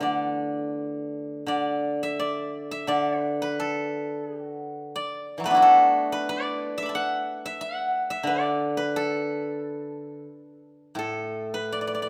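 Chinese traditional music with a pastoral, elegant mood, played freely in rubato with uneven beats. A solo steel-string zither, picked with fingerpicks, sounds bright and silvery up front, its ringing acoustic tone spanning a broad range from low to high across the whole 12.1 seconds. Light reverb surrounds the instrument in this short cut from a longer piece, and a new section begins at 1.5 seconds.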